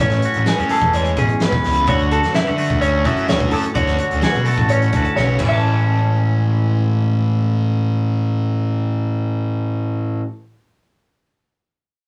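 A rough rehearsal-room recording, with small room ambience and a wet studio reverb, carries this bright, playful fragment of math rock and midwest emo at 128 BPM in a straight 4/4, in A major. A twelve-string electric guitar plays arpeggios high in its register, its clean, compressed tone touched by slapback echo, while a twangy electric guitar holds down the accompaniment beneath it. A fuzz picked electric bass sits up front, overdriven and punchy, anchoring the harmony as it moves from Amaj7 to Dmaj7 and back to Amaj7. A loose indie drum kit, distant and roomy with dark cymbals, a fat snare and a rolled-off top, plays crash, hi-hat, kick and snare until a fill at 5.2 seconds, then drops out at 5.5 seconds. The guitars and bass carry the second section on their own until the clip ends at 10.3 seconds.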